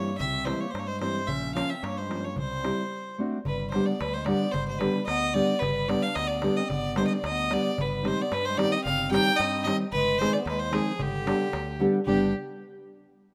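A clear fiddle opens this Balkan wedding-band excerpt, bowed by a single player up front with light vibrato and an earthy edge, while a dark clarinet in a classical style sits in the background beneath it, and a full-bodied nylon-string guitar, thumb-plucked in a classical manner, and a direct, amped fretless electric bass join from the very start. A small, high darbuka with a clay shell and natural skin enters at 0.2 s, played with soft hands and sounding compressed and saturated, tucked behind the other parts. The tune moves at 111 BPM in a straight 2/4, beginning in C phrygian dominant over chords of C, Bbm and D7, pausing for a short break, then settling into G phrygian dominant at 3.5 s, with harmonies passing through Cm/G and Ab/G before returning to G. The mood is bittersweet and virtuosic, with the fiddle carrying the melody high above the clarinet's low second line. A lush hall reverb with a moderate tail gives the rough home-demo mix a sense of space.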